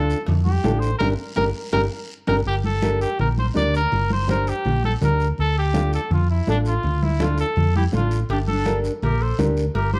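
A driving, straight cumbia groove from a raspy, dry guiro, hard-handed congas and ringing cowbell and timbales carries this passionate Latin fragment, where a round, up-front hollow-body electric bass and a dark, fingerpicked nylon-string guitar with audible finger squeak support a punchy trumpet melody with light vibrato and plate reverb, soloing over a band accent and drum fill until 2.5 seconds, before a breathy clarinet second line slips in softly in the background at 7.8 seconds.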